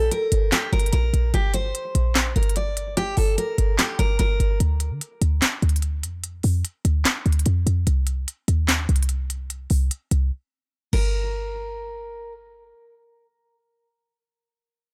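A short, punchy 808-style bass anchors this eerie, brooding trap cut at 147 BPM in a half-time feel in G minor, its tight, mellow sine tone layered with noise and running from the start to 12.7 seconds. A picked steel-string acoustic guitar carries the full-bodied melody through an analog delay, stopping at 4.6 seconds and returning at 10.9, while a trap drum kit, re-recorded in a small room, adds a sharp snare, crisp hi-hats, handclaps and crash cymbal until 11.0 seconds, with a break from 10.3 to 11.1 seconds. The chords move from Gm through Dm and Cm back to Gm, and the sound is dry and gritty with transformer saturation, the whole fragment lifted from a longer piece.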